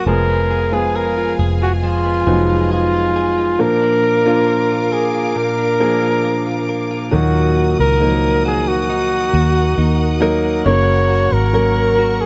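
A clear, up-front flugelhorn sings the melody with vibrato from the very first moment, over an intimate grand piano whose action noise can be heard beneath its natural tone. This melancholic, emotional pop ballad moves at a slow, straight pulse, a short passage cut from a longer piece. A dark, round electric bass, foam-muted and amped, sits forward in the mix, while a clean, compressed electric guitar, recorded direct with a scooped tone, picks arpeggios through a digital delay in the background. Lush bowed strings hold smooth, even chords high above, softer than the other parts. The harmony moves from a diminished chord to a major one, then shifts into a new section at 7.1 seconds that opens on the home minor chord before moving to a major chord. Light reverb and small-room ambience give the whole a close, soft-topped sound.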